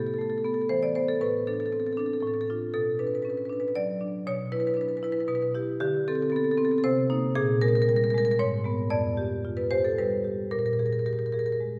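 A contemporary classical piece for solo marimba, this playful short cut from a longer work moves at 116 BPM in 3/4 and in A minor. Played with medium hard mallets across a range from F2 to D5, the marimba has a warm tone and sits up front, though it is heard from further back in a reverberant scoring stage with a lush 1.6-second tail. Its harmony drifts through suspended and added-note colours, from Asus2 through Bmadd9 and Cm7 to Abm and Fsus2, before settling on Absus2/Bb at 10.5 seconds.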